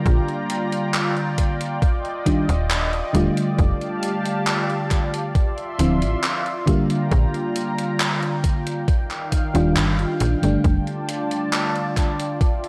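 Vaporwave with a woozy, faded mood, cut from a longer piece, where a mellow, round FM electric piano with lush chorus and analog delay plays over a thick, warbling detuned unison pad carrying 12-bit sampler grit. A snappy slap-like FM bass with tube saturation, a thumpy overdriven electronic kick and a gated 80s digital drum machine with handclaps and hi-hat, both drum parts re-recorded in a large room, move through a progression of Bb6, Ebmaj9, F69 and Dm9 chords under light reverb.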